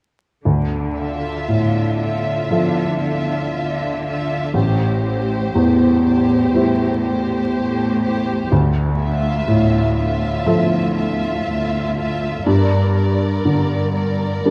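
A felt-muted upright piano sits up front in this bittersweet, sorrowful passage of cinematic film score, its soft, intimate tone carrying the accompaniment across a broad range from low bass notes up into the treble. Beneath it, a symphonic cello section enters at 0.4 seconds, supplying a smooth, even bass line with a rich vibrato. At 1.0 seconds a lush violin section joins with an expressive bowed second line, placed at a distance behind the piano. The rubato feel lets the harmony drift through minor colours, moving from Dmadd9 to Am7, back to Dmadd9, and settling on Gm. A moderate scoring-stage reverb and a dark production with vinyl crackle give the piece a hazy, nostalgic air, and it plays as a fragment lifted from a longer cue.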